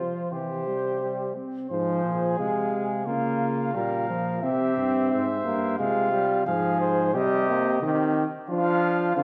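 Driving and serious, this fragment of an imitative classical canzona for brass ensemble unfolds in straight 4/4 within a concert hall's moderate reverb. A dark cornet carries the melody with light vibrato while the trumpet, soft in attack and also lightly vibrato, traces a second line beneath it; a warm trombone supplies the accompaniment, and the bass trombone joins on the bass at 0.3 seconds, both distant and roomy yet sitting up front. The harmony moves from C through Fm/Ab and Bbm/Db before closing on F5 at 8.5 seconds.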